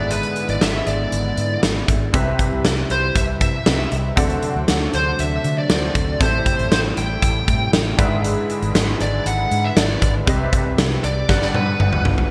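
Dramatic and urgent, this 1980s-style pop excerpt sets a smooth, overdriven lead guitar melody with digital delay over clear baby grand piano with analog chorus, a brassy sawtooth pad with chorus holding sustained chords in the background, a round, foam-muted fingered electric bass, and a huge arena drum kit with punchy kick and gated reverb that closes on a drum fill from 11.3 seconds, all in a bright digital production with lush hall reverb and a faint mains hum.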